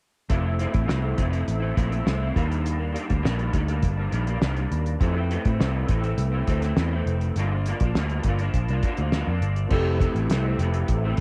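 A dry home recording on cassette carries this laid-back, dreamy stretch of indie and bedroom pop, cut from a longer piece and moving at 102 BPM in a straight 4/4 in F major. A cloth-damped drum kit sits up front with a thuddy, fat snare, a tight kick, dark cymbals and a rolled-off top, its hits softened by tape. Beside it, a vintage muted electric bass is picked with a round, punchy, foam-muted tone, while an electric guitar through a small old amp plays a dark, slightly broken-up, lo-fi accompaniment coloured by ensemble chorus, warbly pitch drift and cassette grit. The harmony moves from Fmaj7 to Ebmaj7, back to Fmaj7 and on to Gm7 before settling back on Fmaj7. At 9.7 s, mellow analog keys slip into the background, their full-bodied square and sawtooth tones reinforced by a sub octave and shaped by a filter sweep, chorus and fast, decaying notes.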